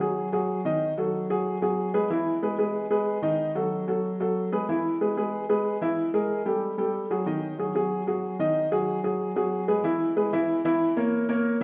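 A lone baby grand piano, open-toned and up front with long sustain, carries this sultry, fiery jazz excerpt in G# minor at a brisk 186 BPM in straight 4/4, moving through diminished, suspended and major-seventh colours and a rootless B7 before turning toward C# minor at 9.8 s, all set in the wet reverb of a recital hall.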